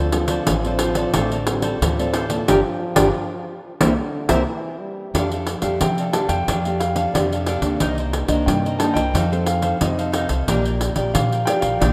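A straight 4/4 samba and choro groove at 90 BPM in F major, carried by a jingly, up-front pandeiro, a woody, thumpy pizzicato upright bass, a crisp picked cavaquinho and a thumb-plucked classical nylon-string guitar, sets a playful, festive mood in this excerpt cut from a longer piece. A soft-attack trombone with vibrato plays a background second line until 5.1 seconds, with a band accent from 2.5 seconds, and then a dark, mellow baby grand piano with long sustain takes the melody from 5.8 seconds over chords moving from F69 through Cm9 and F7 to Bb6. The rough home demo mix sits in a moderate, lush hall reverb.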